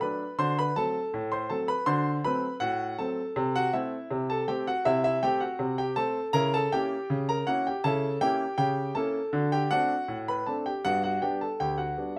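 In a straight 2/4 feel, this playful, lively ragtime passage cut from a longer piece features a solo grand piano, warm, polished and up front in a moderate studio reverb, ranging from D2 to C6 as the harmony moves from D7 through Am/C and C#dim7 back to D7 before settling on G at 10.8 seconds.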